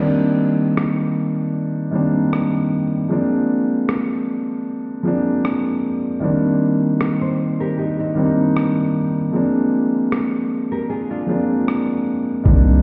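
Heard muffled through a wall with stone room reverb, this sensual, late-night contemporary R&B passage, cut from a longer piece, swings gently in 4/4 over Cm9 and Bb9 chords. A dark, mellow concert grand piano carries the accompaniment up front with long sustain, while a gritty, compressed sampler-style drum kit adds a thumpy kick and rim clicks, and a woody, fingerpicked nylon-string guitar with old strings enters at 7.2 seconds with delayed arpeggios. At 12.5 seconds, a deep, sine-toned 808-style bass lands up front on a low C, decaying just as the passage ends.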